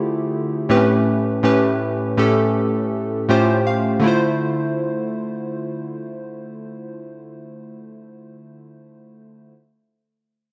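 Swung sixteenths at 81 BPM in 4/4 set a moody, late-night R&B groove in D dorian, carried by a single analog keyboard part that sits up front with a round, detuned, wave-folded tone, a chorus shimmer, a filter sweep and fast-attack, decaying notes. The harmony moves from Dm7 to A9, and a keys fill from 2.9 to 4.0 seconds leads through an altered A7 back to Dm7. Light reverb and a dark production frame this short fragment of a longer piece.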